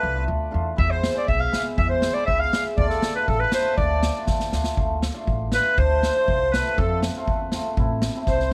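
Klezmer at 120 BPM in 2/4, festive and soulful, built on D dorian sharp4 with chords moving from Dm through E, F and Am. A clear, soft-attacked clarinet with tape echo carries the melody up front in a classical style, shadowed by a reedy, sweet accordion with light tremolo tuning, while a shimmering, hammered cimbalom, a woody pizzicato upright bass and a boomy, airy street-band drum kit entering at 0.8 s fill out the sound. A drum fill at 4.3 s sets up a clarinet solo from 4.8 s to the end of this short cut, heard through close, detailed microphones with light reverb.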